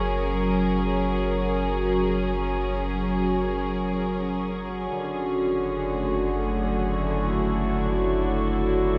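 From the first moment, a dark studio string section holds soft-edged, bowed sul tasto chords up front in this weightless, serene ambient passage in free time and F# major, drifting from F#add9 to Dmaj7/F# at 4.9 seconds under a glistening shimmer reverb. Beneath it a round sine sub bass sits deep on F#1, while an evolving analog drone of sawtooth and pulse waves, with pulse-width modulation and chorus, swells in slowly and lingers. High above, a very quiet, breathy wind-like noise texture floats, all set in a lush hall reverb with a dark, warm production, in a fragment cut from a longer piece.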